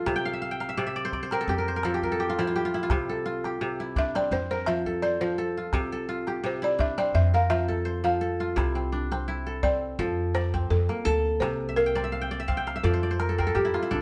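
A buzzing, woody balafon leads this hypnotic West African traditional piece, played with soft rubber mallets and heard close-miked, dry and full as it carries a solo melody until 8.6 seconds. Alongside it, an up-front kora adds crisp, ringing fingerpicked arpeggios, with one fill near the start and another from 11.7 seconds to the end. Beneath them, a dark, growly pizzicato upright bass with steel strings gives a thumpy low line, while a deep acoustic calabash keeps a lightly swung pulse in four. The harmony moves between C and F chords and closes on a C13. The band plays live in one moderate stone room with a one-second reverb, giving this section, cut from a longer performance, a warm, shared space.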